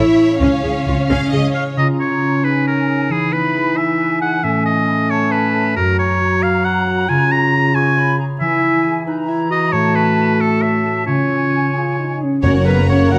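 Triumphant and heroic, this cinematic adventure-score cue in a straight 6/8 at 90 BPM opens with lush bowed violins, violas, cellos and double basses over ringing, fingerpicked concert harp arpeggios that continue throughout; as the strings fall away by 1.8 seconds, a bright, up-front solo oboe, pure flutes and a warm clarinet carry the lines above mellow French horn chords, and at 12.4 seconds the strings return alongside background trombones and very quiet timpani, set in a moderate scoring-stage reverb with close, detailed miking.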